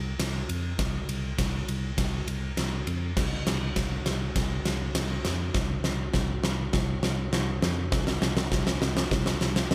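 In a straight 4/4, this soaring, hopeful post-rock passage is one long build-up carried by a drum fill. A clean tine electric piano through a combo amp holds the low bass line from the start. A huge, acoustic arena drum kit sits up front from 0.2 seconds, with a punchy kick, fat snare and bright crash and ride cymbals ringing in a big room, all under light reverb.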